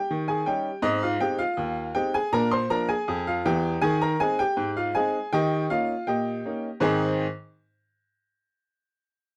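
A brilliant, woody upright piano plays alone and up front from the very start to 7.3 s in this cheerful, jaunty ragtime fragment in Ab major at 80 BPM in a straight 2/4, moving through Eb7, Ab and Bb7 harmonies in a dry, close 1970s-style studio sound touched with light reverb.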